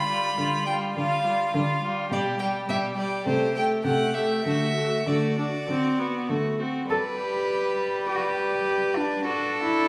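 A wet, reverberant scoring-stage sound surrounds this graceful, cheerful classical-period string quartet, cut from a longer piece, moving quickly at 101 BPM in G major with a flexible, rubato 4/4 pulse. All four players use a reedy, gut-string period tone: a rich first violin carries the close, airy-bowed melody with light vibrato, and the second violin adds a supporting line beneath it. An up-front viola with a warm, smooth top fills in the accompaniment, and a dark, close cello anchors the bass, while the music shifts into a new section at 6.9 seconds.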